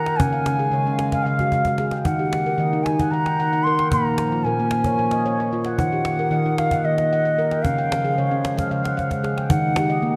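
Hypnotic and meditative, this world piece in Eb minor moves in a straight 7/8 at 226 BPM counted in eighths, a short passage cut from a longer work. Up front, a bamboo bansuri carries the melody between Eb5 and C6 with a pure, tongued tone and gentle vibrato. Beside it, a stainless steel handpan played with soft fingertips rings out mellow arpeggios from Bb2 to G5, its notes trailing into a diffuse ambient delay. Behind them sits a warbly, lo-fi pad of detuned square and triangle tones, slow to bloom and long to fade, holding nostalgic sustained chords with chorus and its own reverb. A close, dry cajon struck with hard hands adds woody hits and faint snares, with drum fills at 1.4 and 9.0 seconds, while the chords cycle through Db, Ebm and Bbm inside a wet recital hall reverb.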